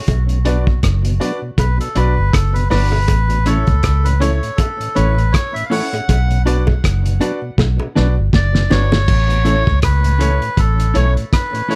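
A reedy, breathy melodica with tape echo carries the melody over a serious, laid-back roots reggae groove at 80 BPM, moving between Bm and A above a round, foam-muted fingered bass and a cloth-damped, muffled drum kit with a fat snare and dark cymbals that plays a fill from 7.6 to 9.1 seconds, while tight, high-tuned bongos drop out at 9.1 seconds, a soft tonewheel organ with slow rotary speaker and tape echo sits in the background, a very quiet clean electric guitar adds accompaniment, and a natural-sounding baby grand piano punctuates with stabs, all in a dry sound cut from a longer piece.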